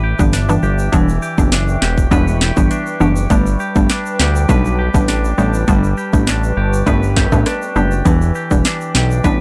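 A fat, thick analog bass sits up front in this sultry, hypnotic dancehall excerpt, its detuned sawtooth tone evolving under a filter sweep while it holds low notes from E1 to D2. Beside it, an electronic afro-pop drum kit enters at 0.2 seconds with a deep kick, sharp snare, handclaps, rim click and hi-hat at a straight 101 BPM in 4/4, joined by distant egg shaker and timbales played with hard hands in a large room. A hollow, bouncy square-wave pluck with a noise layer and chorus adds detuned accompaniment, and a clean, twangy electric guitar with a scooped, compressed tone picks arpeggios through spring reverb. Behind them, a deep, moody ambient pad holds dark, wave-folded chords with ring modulation, chorus and sidechain pumping, moving from Em7 to Gadd9 at 3.3 seconds and back to Em7 at 8.1 seconds in E dorian. The overall sound is dry and gritty, with little reverb on the mix as a whole.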